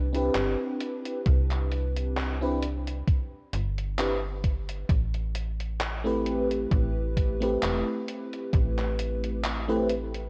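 Vaporwave at a slow 66 BPM with a light 16th-note swing in C major, this faded, dreamy fragment of a longer piece drifts from Cmaj7 to Am9 at 4.9 seconds as a lush, detuned FM electric piano with a soft pad layer, treated with tremolo, chorus and tape echo, sits up front beside a snappy, metallic slap-like FM bass, while a gated 80s digital drum machine of handclaps and hi-hat and a thumpy electronic kick entering at 1.3 seconds carry gritty 12-bit sampler texture and large-room character, all under light reverb and the worn, warbling pitch drift of old cassette tape.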